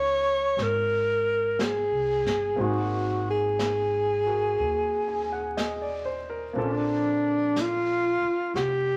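A breathy, close-miked alto saxophone carries a tender, romantic melody with subtone, vibrato and scooped notes over an intimate baby grand piano with audible action noise, woody pizzicato upright bass and a vintage brush kit entering at 0.6 seconds, in this slow 60 BPM swung jazz ballad excerpt moving from Dbmaj9 through Ab9 to Bbmaj9, set in a large studio reverb with vinyl crackle.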